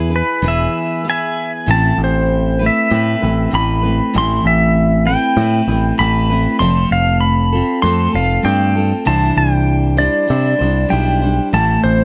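Over a straight 4/4 pulse, this wistful, reflective snippet of folk and heartland rock puts a full-bodied, picked dreadnought acoustic guitar and a bright, direct, amped electric bass up front, while a clean, twangy pedal steel guitar played with fingerpicks enters at 0.2 seconds to carry the melody with compressed slide lines and volume swells, set in a small room with light reverb.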